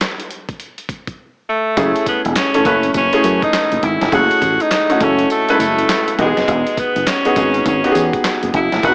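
Heard through the small-speaker haze of a home cassette recording with light digital reverb, this bouncy, slick new jack swing excerpt opens on a gritty, compressed sampler-style kit of thumpy kick, snare, hi-hat, handclaps and tambourine with a tape-worn edge, before a bright, vintage alto saxophone solo with vibrato arrives up front at 1.5 seconds and, at 1.8 seconds, clear, short-sustain baby grand piano and growly, punchy fingered electric bass join over F#m7 moving to Emaj7.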